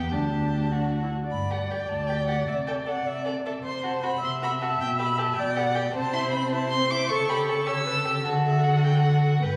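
Heard from further back in a wet recital hall, this stormy, urgent excerpt from a quick classical-period string quartet movement in G major runs at 104 BPM in a straight 6/8, with a dark, sul tasto first violin carrying the high melody over a rich, even second violin line, an expressive viola accompaniment with portamento, and an up-front cello bass, all four playing throughout the 9.6 seconds as the harmony moves from Dsus4 through Cmaj7#11 and A7/C# to a close on D.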